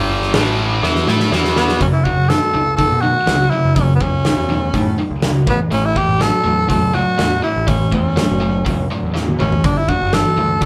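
Confident and sunny, this classic rock excerpt moves at 123 BPM in a straight 4/4, cut from a longer piece. A bright, overdriven electric guitar, double-tracked and up front, drives the riff from the start over power chords moving from A5 to E5 and then F#5, while a growling picked electric bass, also overdriven and amped, anchors the low end. The big acoustic drum kit enters at 0.2 s with a dark, smooth sound, a punchy kick and a medium-tuned snare, and fills at 0.8 s lead into the next section. At 1.6 s a raspy, gritty tenor saxophone steps forward as the soloist, growling with vibrato yet keeping a smooth top in a pop style, as the harmony passes through A and settles on Gsus2 after another drum fill. The band sounds as if playing live in one room, with a wet studio reverb giving the whole a roomy sheen.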